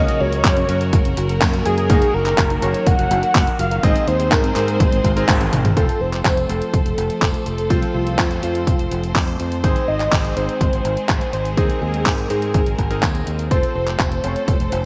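A thick, detuned sawtooth unison lead with vibrato opens this nostalgic, danceable italo disco fragment over distant, biting bowed strings, a soft round pluck arpeggio that stops at 5.7 seconds, clangy electric grand piano stabs with subtle chorus, and a growly fingered electric bass. The lead carries cassette tape coloring and digital delay, while an overdriven 12-bit drum machine supplies handclaps, hi-hat and toms beside a punchy, layered electronic kick, and a band accent at 5.3 seconds with a short drum fill leads into the second section. Plate reverb, vinyl crackle and bright 1980s-style digital production give the music its period sheen.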